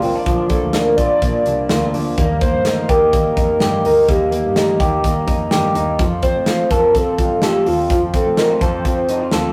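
A straight 4/4 groove at 126 BPM drives this short, youthful and bright slice of jangly indie pop, cut from a longer piece. A polished studio drum kit sits up front, with a punchy kick, a medium-tuned snare and hi-hat in an airy room. A warbling, nostalgic lead built from detuned triangle and sawtooth tones carries the melody with a soft attack and sustained, mellow notes, colored by chorus, tremolo and vibrato. An electric guitar through a small old amp plays picked arpeggios up front, its dark, slightly broken-up tone bathed in spring reverb, while a fingerpicked jumbo steel-string acoustic with fresh strings adds full-bodied warmth in the background, and a close, bowed double bass holds the low end with smooth, even lines and light vibrato. The harmony moves from Bb to Eb at 2.2 seconds and on to F at 6.0 seconds, all within a rough rehearsal-room recording wrapped in wet studio reverb.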